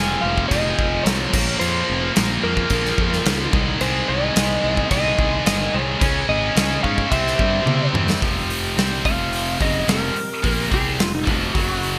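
Aggressive and menacing, this hard rock excerpt in F minor drives at 109 BPM in a straight 4/4, with a dark, slightly broken-up lead guitar carrying the melody through analog chorus and digital delay while an octave-fuzz lead guitar adds a second line in the background until 7.9 seconds. Beneath them, three high-gain guitars, two scooped and bright and one double-tracked and very quiet, churn a picked riff over a growly, overdriven fuzz bass, and a soft, flute-like tonewheel organ with slow rotary vibrato holds very quiet sustained chords. The big rock drum kit enters at 0.4 seconds, up front with punchy kick, bright cymbals and gated reverb, and a fill leads into the lead guitar solo at 8.2 seconds, all framed by a bright 1980s-style digital production.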